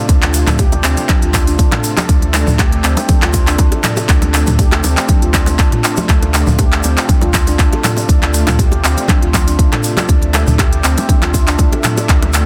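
Hypnotic and warm, this afro house cut rides a punchy, layered electronic kick and a crisp, tape-tinged drum kit of handclaps, hi-hat and toms, while very quiet congas and tight, high-tuned bongos with hard hands add close acoustic percussion and a grainy tube shaker sits in the background. A ringing, meditative handpan plays airy arpeggios through digital delay over a round sine sub bass and a smooth, detuned sawtooth pad with chorus, all three pumping against the kick on a single Dm7 chord. The master is dense and heavily limited, set in a small room ambience, and the whole 12.5 seconds is cut from a longer piece.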